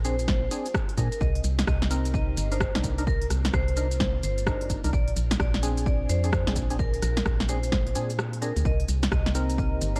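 A hollow, organ-like FM bass sits up front with a fast, decaying attack, anchoring this late-night, soulful two-step UK garage groove with its swung sixteenths. A punchy analog kick, briefly dropping out from 8.2 to 8.7 seconds, joins a layered garage kit of cracking snare, crisp hats, rim click and shaker, both tape-warm and re-recorded in a large room. A ringing, metallic vibraphone carries the melody through tape echo, while dark, chorused organ stabs punctuate the changes and a very quiet, silky string machine holds the chords in a dry, dusky production.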